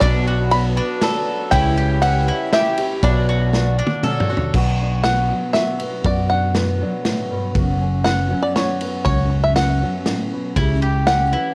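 A twangy bluegrass banjo carries the melody throughout, its fingerpicked lines colored by tape echo over a round, dark electric bass and a punchy natural country drum kit in this bittersweet, yearning indie folk waltz cut from a longer piece, with a drum fill leading into the second half at 4.5 seconds. Early on, a shimmering, octave-doubled twelve-string guitar, an intimate baby grand piano with audible action noise, and bright mandolin arpeggios fill out the accompaniment, before a fingerpicked steel-string acoustic guitar takes over up front, and the mandolin returns at 10.6 seconds. The whole has the lo-fi grain of a home cassette recording in a small room with light reverb.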